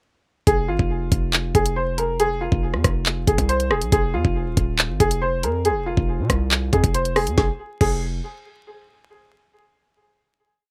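A dark, cold drill hip hop piece opens at 0.5 seconds with a clear, slightly detuned upright piano looping a sampled-sounding melody through digital delay, over a hard-hitting 808-style bass whose long, heavy sub notes follow the kick with pitch slides. The overdriven electronic drill kit sits up front in a half-time feel, its knocking kick and woody snare joined by bright skipping hi-hats, handclaps, rim clicks and crash cymbal. The rough home demo mix carries vinyl crackle and light reverb, and the hook gives way to a final chord at 7.4 seconds.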